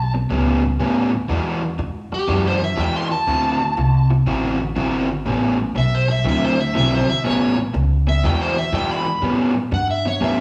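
A rough rehearsal-room recording with tube saturation and a stony room reverb frames this soulful, laid-back electric blues shuffle at 121 BPM in A mixolydian, a short cut from a longer piece swinging over A9, E9 and D9 chords. A crunchy, picked guitar riff sits up front beside a woody, bright pizzicato upright bass. A dark, overdriven slide guitar carries the melody throughout and turns into a solo from 9.2 seconds.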